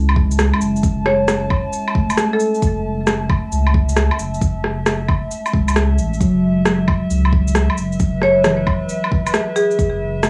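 Muted, felt-like synth keys and a round sine sub bass with tube saturation open this nocturnal, melancholic future garage excerpt at 134 BPM in F# minor, swung on the 16ths and pumping with sidechain, as a warbling, detuned tape-like pad, an up-front electronic woodblock, shaker and rim click, and a deep electronic kick join over F#m7 moving to C#m7/F#, while a woody, bright marimba with 12-bit sampler grit and tape echo carries the melody from 1.1 s and returns at 8.2 s, all set in a light-reverb, small-room cassette sound.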